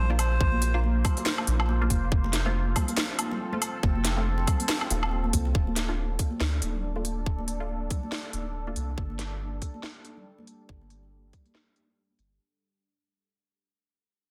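A tight, overdriven electronic kick sits up front in this brooding, meditative deep dubstep cut at 140 BPM in D minor, with a half-time swing feel. A cracking, tape-warm garage kit of snare, crisp hats, handclaps and woodblock plays beneath it, alongside distant high-tuned congas with dub echo and a round sub bass. A slow-evolving chorused pad sustains throughout while muted, phasered chord stabs sit in the background, and a reedy, breathy melodica phrase appears only in the first 0.8 seconds before the fade-out begins at 5.5 seconds.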